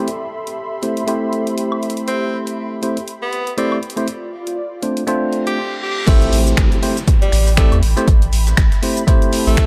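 A swung 120 BPM deep house groove in 4/4 rides on a punchy analog drum machine of hi-hat, shaker, finger snaps, woodblock and crash, under a smooth, detuned sawtooth pad holding Am7 and Dm7 chords and a bell-like tine electric piano playing gritty, filtered stabs with delay, both sidechain-pumped, while a downlifter and reverse cymbal sit in the background. From 2.1 s an edgy tenor saxophone takes a jazz-style solo with vibrato, scooped notes and digital delay, setting a late-night, smooth mood in A minor. At 6.1 s the drop brings in an up-front electronic kick, a round, deep analog bass and a very quiet, dusty sampler-style kit with a fat snare, all framed by light reverb and a dark production.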